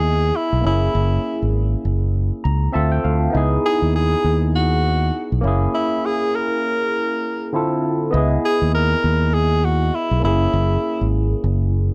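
A 100 BPM groove in 4/4 swings its sixteenths gently, setting up a lush 1970s-style soul piece in C# dorian with a bittersweet, cinematic mood. A breathy tenor saxophone carries the melody up front in a jazz style, its subtone sound smooth on top and touched with light vibrato until it drops out at 11.1 seconds. Beneath it, a barky tine electric piano played clean through a combo amp and colored by phaser comps on minor-ninth and dominant chords, adding a fill from 2.1 to 3.3 seconds and another at 11.7 seconds, while the arrangement breaks between 5.7 and 8.1 seconds. A fingered electric bass, round and amped, sits prominently at the bottom of the mix. The production is dark and warm with little reverb, and the excerpt is cut from a longer piece.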